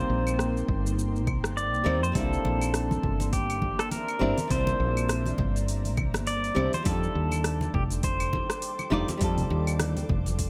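Lightly reverberant and smooth, this wistful sunset chillout excerpt moves at 102 BPM in 4/4 with a swung sixteenth feel, drifting over Cm7, C9 and F13. A bright, twangy pedal steel guitar carries the melody with slide, fingerpicks and volume swells through digital delay, while a dark, fingerpicked flamenco guitar with tape echo accompanies, and a mellow, ethereal detuned pad glows in the background. A round, woody fretless electric bass sits up front from 0.1 seconds, an overdriven deep house kit of claves, metallic hi-hat, rim click and shaker joins at 0.3 seconds, followed by a punchy electronic kick, and soft-handed, low-tuned congas enter at 2.1 seconds.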